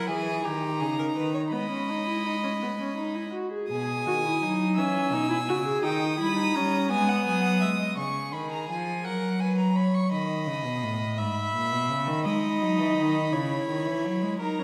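In a straight 6/8, this contemplative yet driving baroque-style fugue for string quartet, cut from a longer piece, sets a reedy first violin melody high above a close, nasal second violin line with an airy bow, while an up-front viola with a smooth top accompanies until 8.0 s and rejoins at 12.2 s, and a rich cello with light vibrato anchors the bass, each part bowed by a single player in gut-string period style within the lingering reverb of a recital hall.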